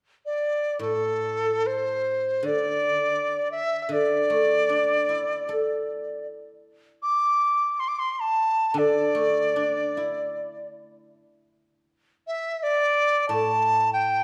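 Chinese traditional chamber music in free time, festive yet graceful, in this short excerpt cut from a longer piece. A reedy bamboo dizi carries the melody from 0.3 seconds, up front with an airy, buzzing-membrane tone, vibrato, soft attacks and rolled-off highs, while a fingerpicked guzheng enters at 0.8 seconds beneath it, bright, silvery and ringing in a lower register. The pair sit in a reverberant recital hall, and a new section arrives at 12.6 seconds before the clip ends.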